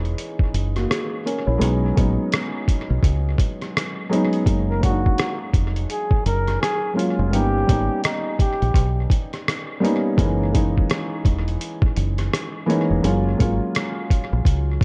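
A soft, echo-heavy mix with light reverb gives this cosy, mellow lo-fi hip hop excerpt a hazy, enveloping sound over a gently swung sixteenth-note feel. A felt-muted upright piano sits up front, intimate and hushed behind a low-pass filter, laying down lush extended chords. Beneath it, a deep dub fingered electric bass is round, dark and punchy, and the sampler-style drum kit, pitched down, compressed and muffled, adds a thumpy kick, hi-hat and rim click with the air of a large room. At 4.7 seconds a breathy flugelhorn drifts in as a distant, whispered jazz-style solo with light vibrato and a soft attack, its line trailing through tape echo and a low-pass filter. The horn steps away at 8.9 seconds, leaving the piano, bass and drums to carry the relaxed groove until the clip cuts off at 14.8 seconds.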